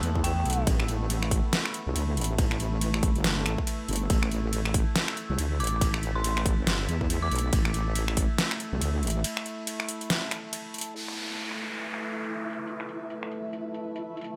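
A light digital ambience surrounds this heavy, cavernous stretch of deep dubstep, cut from a longer piece, at 140 BPM in 4/4 with a half-time feel, a swung sixteenth-note lilt and a slightly flat tuning around an Asus2 chord. The drop opens on a saturated, compressed wobble bass built from detuned sawtooth and sine tones, mellow yet up front, beneath a resonant, overtone-sweeping drone that holds sustained chords through chorus and its own reverb. A punchy, overdriven electronic kick and a layered dubstep kit of finger snaps, metallic hi-hats, ride cymbal and a deep snare drive the groove, the kit sitting forward with low-pass filtering dulling its hats, snare, cymbals and room. Far in the background, an eerie, inharmonic FM bell briefly chimes at the start and returns at 5.6 s, smeared by chorus, phaser and dub echo. The bass drops out at 9.2 s for a short break. A forward downlifter enters at 11.0 s, joined at 11.4 s by a flickering, granular texture, and together they carry the closing seconds alongside the kit and the drone.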